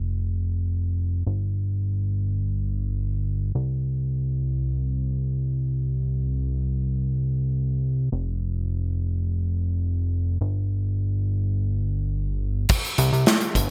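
In free time, this driving, moody synthwave excerpt opens with a fat, detuned sawtooth-and-square bass alone from 0.0 seconds, its saturated, plucky tone sitting up front with tube saturation and sidechain pumping in the low register between F1 and C2. At 12.7 seconds a big rock kit with a punchy kick, bright cymbals, a medium-tuned snare and gated reverb enters for the final second. The bright 1980s-style digital production keeps the overall sound dry, tuned to A4 = 441 Hz, and the clip is cut from a longer piece.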